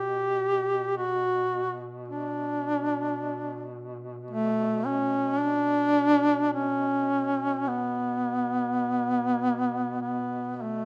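Longing and solemn, this short passage of Caucasian folk music is a lament in a free, rubato 3/4. A duduk carries the melody between A3 and G4, close-miked and up front, its warm tone shaped by vibrato and scooped notes. Beneath it, a second duduk holds a low B2 drone from 0.0 to 10.8 seconds, sitting much lower in the mix with a soft attack, vibrato and a distant, roomy quality. The instruments are tuned slightly below standard pitch, to A4 = 437 Hz. A moderate recital hall reverb surrounds the pair. The clip is cut from a longer piece.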